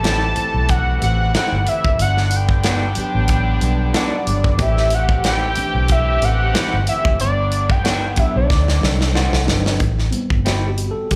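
Lush 1970s-style soul with a bittersweet, silky, gently swung feel, heard as a live club gig through the venue's PA, where a fat, detuned sawtooth analog lead with chorus and vibrato carries the melody over a worn, lightly overdriven tine electric piano, nasal stopped French horn chords, a dark, slightly broken-up guitar riff, a round, foam-muted bass and a punchy, up-front studio drum kit whose fill at 8.5 seconds leads into a brief electric piano solo at 9.8 seconds.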